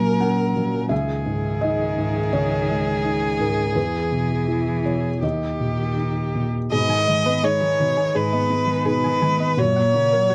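A fragile, melancholic neoclassical fragment opens with a soft, dark felt-muted upright piano, its action noise audible, beneath a rich, vibrato-laden solo violin melody and a smooth bowed cello line set in the background, all moving in loose rubato through a dry, close 1970s-style studio room, until at 6.7 s a breathing, reedy harmonium holds sustained chords and a twangy, chorused resonator pluck adds decaying arpeggios.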